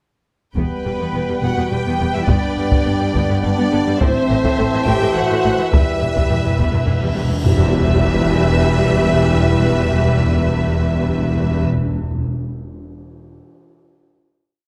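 Cinematic, epic orchestral film score in 3/4, dark and dramatic: lush, expressive violins carry the melody while a second violin section doubles the tune at the octave, violas drive an ostinato with portamento, and cellos and woody double basses hold a background bass ostinato. Distant, roomy French horns and tight, bright trombones sustain chords over a heavy, close and dry taiko ostinato that stops at 7.6 s. Very quiet cymbal swells and tam-tam strokes enter at 4.0 s, and hard-mallet timpani follow at 5.7 s, rolling toward a huge impact of cymbal swell and sub drop at 7.5 s. The final chord rings in light reverb, with the timpani sounding last until 12.3 s.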